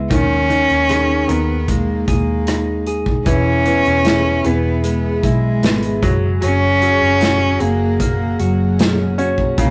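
A straight, steady pulse from an up-front studio drum kit with punchy kick, snare, rim click and hi-hat carries this tender, heartfelt pop ballad excerpt, where an intimate cello sings the melody with light vibrato and a soft, airy bow over a round, foam-muted electric bass, bright short-sustained grand piano accompaniment and clean, compressed electric guitar arpeggios, while a breathy, detuned pad with chorus drifts in from the background at 3.9 seconds, all set in a rough rehearsal-room sound with a stone room's reverb.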